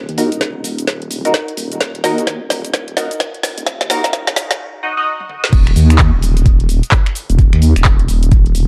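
A nasal, resonant wobble bass pushes up front through this aggressive, bouncy bass house cut from a longer piece, its formant-filtered vowel sweeps sitting between Eb1 and Eb2 with overdrive, chorus and sidechain pumping in Eb minor. At 129 BPM in 4/4 with a 62% swing on the sixteenths, a layered garage kit of woody snare, metallic hats, handclaps, finger snaps, shaker, toms and crash rides under a knocking electronic kick, both re-recorded in a small room. The opening build-up runs to 5.5 seconds over an Ebm chord, with drum fills and a filter sweep on a band-passed sawtooth chord stab that rings between Eb4 and Eb5, its detuned, ring-modulated tone coloured by phaser, lush chorus, digital delay and sidechain pumping. The stab stops at 5.5 seconds, when the drop arrives and the harmony falls away to bass and drums. The production is dark, with light reverb and a digital ambience.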